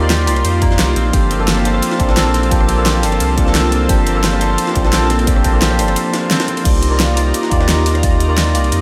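Dreamy and melancholic, this excerpt of liquid drum and bass at 174 BPM drifts between Cm11 and Gm11 chords under a moderate plate reverb, with a clean tine electric piano through a combo amp sitting up front with phaser and diffuse ambient delay. A deep, round sine sub bass anchors the low end beside a punchy layered electronic kick that enters at 0.6 s, while in the background a lush, warbling detuned sawtooth pad pumps with sidechain and chorus, and an acoustic concert harp rings out fingerpicked arpeggios through delay. The drums blend a pop kit's fat snare and bright hats with a gritty, pitched-up jungle sampler-style kit whose high-tuned snare and ride sit far back, and a brief break at 6.0 s leads into the return of the drop at 6.7 s.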